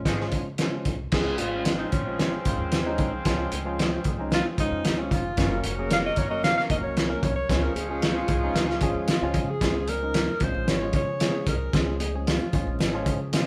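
Joyful and danceable, this uptempo 1960s-style soul groove moves at 113 BPM in a straight 4/4, sitting in Db major and cut from a longer piece. It opens with a band accent before a breathy, punchy alto saxophone takes a solo with vibrato and a smooth top from 1.1 to 9.6 seconds, backed by a clear, tight horn section with octave doubling that plays a second line until 9.3 seconds. A barky tine electric piano, bright and clean through a combo amp, carries the accompaniment while a woody pizzicato upright bass anchors the low end. The cloth-damped drum kit sits up front with a fat snare, tight kick and gritty, muffled, lo-fi character, joined by high-tuned, ringing congas played with hard hands, kept very quiet. A lightly overdriven tonewheel organ with third harmonic percussion and slow rotary speaker holds very quiet sustained chords, as the harmony shifts from Db to Gb and back. The band plays live in one room, with a moderate large studio reverb giving the whole a lively sense of space.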